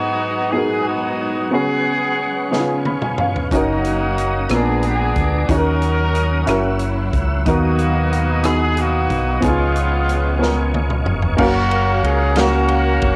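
A tight, vintage horn section carries the melody up front with a light vibrato in this soulful, uplifting slow gospel excerpt in 6/8, over a clear baby grand piano with short sustain, a tonewheel organ turning on a slow rotary speaker with chorus vibrato in the background, and lush, distant bowed strings that stop at 11.4 seconds. A natural country drum kit with bright cymbals and a punchy kick comes in with a fill at 2.5 seconds, alongside a piano fill. A dark, round fingered electric bass joins at 3.5 seconds, all set in a small room with light reverb and the character of a home cassette recording.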